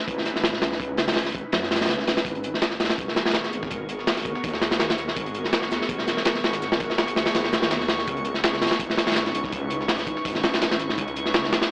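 A crunchy, up-front, saturated breakbeat kit with a tight kick and medium-tuned snare drives this dark, frenetic drum and bass and jungle excerpt over a thick, menacing detuned saw bass and an ethereal pad in the background, moving between C#m9 and G#m9. A very quiet sampler-style breakbeat kit, re-recorded in a large room, joins at 2.3 seconds, and a glassy texture of drifting overtones arrives at 3.0 seconds, with the recording's gritty AM-radio character and a moderate echo-chamber reverb shaping the mix.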